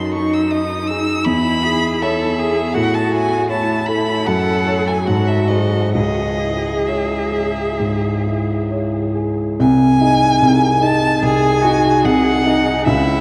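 The recording sits in a vast, echoing space, its huge, wet reverb letting each note hang long after it sounds. This is a slow romantic movement for piano trio, cut from a longer piece, with a solemn, melancholic mood and a freely breathing rubato in 4/4. A single bowed violin carries the melody up front, its tone focused with a smooth top and touched by vibrato. Beneath it, one cello sings a close, dark second line, expressive and shaped with vibrato and portamento. The baby grand piano provides the accompaniment, mellow and vintage in colour with a long sustain, moving through C#m, A and F#m to a G#7 before arriving back on C#m at 6.0 seconds. At 9.6 seconds the music turns to a new section over G#/B#, and the passage breaks off at 13.2 seconds.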